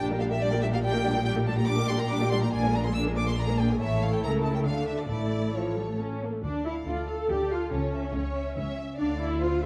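Dramatic and restless, this quick classical-period movement for string orchestra drives along at 141 BPM in 3/4, set in D minor and cut from a longer piece. The first violins carry the melody high above the ensemble with a lush, soft-attacked vibrato, while the second violins add a warm, expressive second line beneath them. The violas sit up front in the accompaniment, their bowing marked by portamento and a rich tone, and the cellos and double basses share the bass, the cellos focused and close yet set in the background, the basses smooth-topped. All five sections play throughout the 9.7 seconds, moving from a passage that leans through Bb7 and A toward D minor into a second section that begins at 6.4 seconds and turns between D minor and A/C#. A moderate scoring-stage reverb and a dark production give the ensemble a sense of space and weight.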